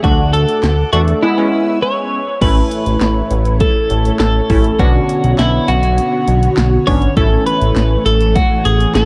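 Synth-pop with a nostalgic, bright mood, cut from a longer piece, where an up-front, clean twelve-string electric guitar carries the melody through harmonic tremolo and analog delay over a funky, detuned polysynth comp that stops at 8.1 seconds, mellow string-machine cellos with ensemble chorus, a fat sawtooth analog bass with a moving notch, and a punchy, overdriven analog drum machine of kick, snare, hi-hat, handclaps and crash, all set in a dark production with light digital ambience and lossy compression artefacts, with a break from 1.2 to 2.4 seconds.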